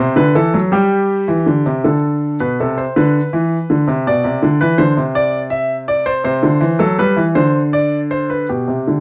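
Serious and driving, this classical piece is written as a baroque-style two-part invention in a straight 6/8 metre, heard here as a short cut from a longer work. A solo concert grand piano carries everything across its 9 seconds, ranging from B2 up to E5. The instrument sounds warm and natural, with a deep bass and an up-front presence. After a brief opening section, a second section begins at 1.8 seconds and runs to the end, moving through chords such as Cmaj9, Cadd9 and Csus2/D before settling on G/B. Close, detailed microphones catch the piano in light reverb, while vinyl crackle lends the recording an aged, worn-in character.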